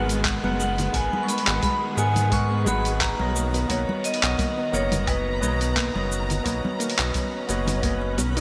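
Bright, 1980s-style digital production and a lush hall reverb frame this relaxed, sunny sunset chillout excerpt, where a metallic hard-mallet vibraphone carries the melody over a barky, overdriven tine electric piano, distant bowed strings, a deep analog bass up front, soft pluck arpeggios with chorus in the background, a very quiet twinkling granular shimmer, a gritty sampler-style soul kit of cabasa, handclaps, hi-hat and woodblock with gated reverb, a tape-warm electronic kick, and ringing congas and bongos set back in the mix.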